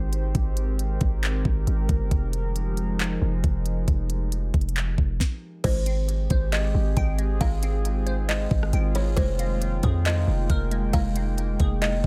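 Blissful and floating, this atmospheric cloud-rap excerpt in a half-time feel sets a warbling, nostalgic tape-like pad with chorus and sidechain pumping over a deep, boomy 808-style bass and an up-front trap kit of knocking kick, sharp snare, crisp hats, claps, rim clicks and crash, then after a brief stop at 5.2 seconds brings in a woody, buzzing kalimba melody with digital delay and a glassy, crystalline wavetable pluck playing arpeggios in the background, all wrapped in digital ambience over alternating major-seventh and minor-eleventh chords.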